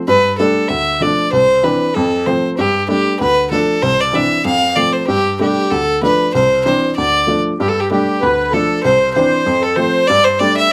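A nasal, earthy fiddle carries the melody up front from the start of this spirited Celtic folk excerpt, bowed by one player with light vibrato over a woody upright piano whose audible action noise and short sustain give the accompaniment an intimate feel. The tune drives along at 192 BPM in 4/4 with a gentle swing, cycling through Gsus2, Dm, Cadd9 and F in a small, moderately reverberant room. At 7.6 seconds, as the section repeats, a reedy, sweet accordion with light tremolo tuning joins with an airy second line.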